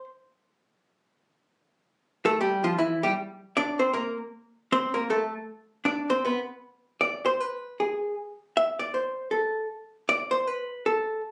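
A lone archtop guitar opens this swinging, playful jazz fragment, its dark, clean, hollow-body tone picked and compressed and sitting up front from 0.0 seconds. The harmony moves through C9 at 2.0 seconds and Amadd9 at 5.1 seconds before ending on an unaccompanied line around 6.6 seconds, with the guitar reaching from E3 to E5. The sound has the casual feel of a phone recording made in the room, with a club's moderate reverb around the amplified instrument and added compression.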